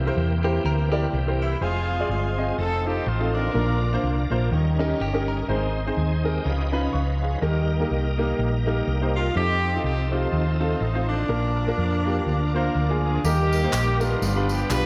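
Uptempo gospel in Eb major at 124 BPM, swung in 4/4, with a hopeful, soulful lift in this brief extract from a longer piece. A clear, punchy horn section carries the melody up front, playing from the start until 4.3 seconds and returning at 9.2 seconds, its pop-style ensemble sound touched with vibrato. Beneath it, a smooth vintage grand piano with short sustain keeps up the accompaniment throughout, while a bright, shouting tonewheel organ holds full chords through a slow rotary speaker and chorus vibrato. A round, dark hollow-body electric bass sits prominently in the mix, and a clean, compressed, picked electric guitar adds a brief second line in two short bursts near the opening. Tambourine and group handclaps join for the closing stretch from 13.2 seconds, all set in a moderate scoring-stage reverb with a dark, warm production.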